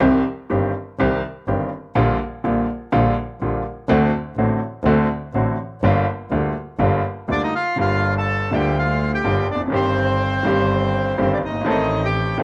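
A reedy, airy bandoneon enters up front at 7.3 seconds to carry the melody in this dramatic, sultry tango excerpt, its tone colored by cassette tape. Beneath it, a bright, woody upright piano with short sustain, also tape-colored, plays the accompaniment from the start, while a single bowed double bass adds a rich, nasal gut-string bass line in period style. Light reverb and a small room ambience give the rubato performance the intimate feel of a home cassette recording.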